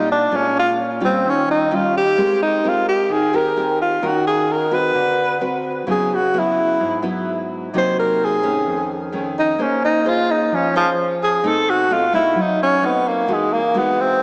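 Romantic and breezy, this bossa nova excerpt at 130 BPM sets a breathy, whispered tenor saxophone solo with vibrato and scooped notes, carrying diffuse ambient delay, over fingerpicked nylon-string guitar with fresh strings and subtle chorus, both up front in a dreamy mix soaked in lush hall reverb with a small-speaker sound, moving through jazzy chords from Bbm7 to Emaj9.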